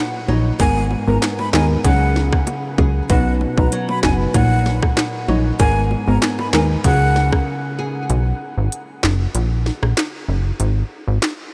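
Bouncy and hypnotic, this dancehall clip at 96 BPM rides a tight, overdriven island pop drum kit with handclaps, rim clicks and smooth hats up front, joined by a punchy, nasal analog bass, quiet low-tuned bongos and a small fingerpicked nylon-string guitar tucked in the background with chorus and delay. A breathy jazz flute carries a straight-toned, expressive melody with delay over deep, dark chord stabs moving through Ebm7/Bb, Abmadd9, Dbsus4 and B, all washed in a dreamy, reverb-soaked mix. After a brief break at 7.5 seconds, the bass and drums carry on from 8.1 seconds through B5, Gb and Ab5 until the cut.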